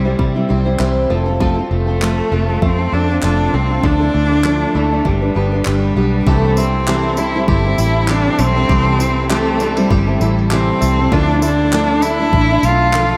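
Carefree and sunny, this acoustic pop excerpt moves at 99 BPM in 4/4 with a light sixteenth-note swing, drifting through C major chords such as F, Dmadd9 and G before reaching C6 at 6.3 s. A bright, bowed cello with vibrato carries the melody through tape echo, over a picked steel-string acoustic guitar with finger squeak and analog chorus, a twangy fingerpicked banjo with tape echo tucked in the background, and a dark, round muted electric bass up front. An electronic house kit of punchy kick, handclaps and tambourine enters at 0.2 s, and a cathedral reverb soaks the mix in a dreamy haze.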